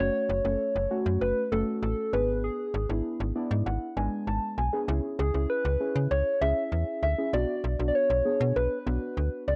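A round, warbling FM synth lead carries the melody in this driving, melancholic synth-pop excerpt in F# minor at 98 BPM, its soft struck tone treated with chorus and analog delay. Muted, felt-like synth keys with a dark, intimate sawtooth and noise texture, chorus and cassette tape colour accompany it and add a fill from 3.0 to 4.9 seconds, while a snappy, metallic slap-like FM bass sits up front beneath an F#m, G#dim, C#m7 and Bm progression. The parts share a wet booth ambience and the character of a home cassette recording.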